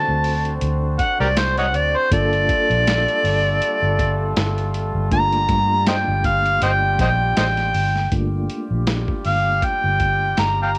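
Set in a digital ambience, this short cut from a longer piece is smoky, mournful soul blues in G minor at 80 BPM, played with straight eighths and a light swing on the sixteenths. An overdriven, gritty, amplified harmonica sits up front and solos from 0.0 to 8.1 seconds, its jazz-style phrasing coloured by vibrato, tongue slaps and scooped notes. Beneath it, a vintage foam-muted fingered electric bass gives a round, dark, amped low end. A lo-fi sampler-style kit joins at 0.2 seconds, compressed, pitched down and muffled, with a thumpy kick, medium-tuned snare and hi-hat re-recorded in a large room. A mellow, reedy electric piano plays clean accompaniment with fast tremolo through its built-in speakers in the background. A distant, roomy horn section holds punchy sustained chords with light vibrato and octave doubling, as the harmony moves from D7 to Gm9 at 2.1 seconds, and a new section begins once the solo ends.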